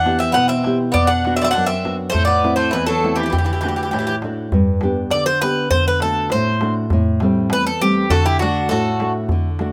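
This short Greek folk excerpt from a bouzouki band has a hopeful feel in a straight duple metre. A Greek bouzouki carries the melody up front, its picked double strings ringing with a warm, metallic edge and some octave-doubled courses. A second bouzouki plays a lower line beneath it, drops out at 4.1 seconds and returns at 8.1 seconds. A classical nylon-string guitar, also up front, fingerpicks the accompaniment through a progression that opens on E minor and later settles toward G and D. A metal-shelled darbuka played with hard hands adds crisp, deep strokes. The sound is close and detailed, with very little reverb.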